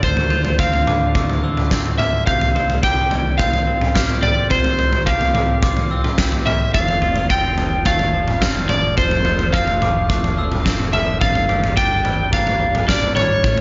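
A cathartic, cinematic stretch of post-rock, the recording sounds dark and rounded at the top, set in a light reverb. Up front, an overdriven slide guitar carries the melody with a warm, fingered tone and slapback echo, while a big acoustic rock kit drives a straight 4/4 with a punchy kick, fat snare and toms in a bright stone room. Beneath them, a fingered electric bass sits round and amped, and a very quiet ambient pad holds deep, detuned sawtooth chords with a slow attack, chorus and long release. In the background, a twangy, clean electric guitar picks compressed arpeggios, and a glockenspiel struck with hard plastic mallets adds ringing, bell-like arpeggios high above, both touched with slapback echo. The harmony moves from Dm7 through C7sus4 and F6 to Gm11 across the 13.6 seconds, with every part playing throughout this excerpt of a longer piece.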